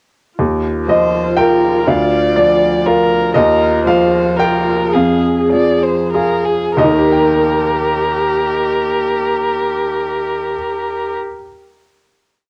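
A woody, up-front upright piano lays down sparse bass and held chords in this intimate, tender neoclassical piece in Eb major, set in a rubato 3/4 at 92-123 BPM, alongside a dark, distant muted viola whose soft-attack sustained chords glide with portamento, both bathed in plate reverb, while a veiled, close muted violin joins at 0.9 s with the melody, all three carrying a vintage cassette-tape tint in a small, home-recorded booth as the theme slows from 2.6 s and settles onto a final Eb chord at 6.8 s.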